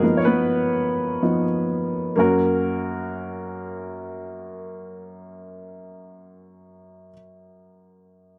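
Played in free time, this brief pop fragment in F# major unfolds with an anthemic, uplifting mood. A clear upright piano carries the whole passage, which is cut from a longer piece, sounding from 0.0 to 8.4 seconds across a range from F#2 to C#5. Its woody, polished tone sits present and up front, touched with light reverb. The opening rests on a rich Bmaj9#11/E# chord before settling onto a plain F# at 2.2 seconds, where a new section begins. The dry, close sound recalls a 1970s studio recording.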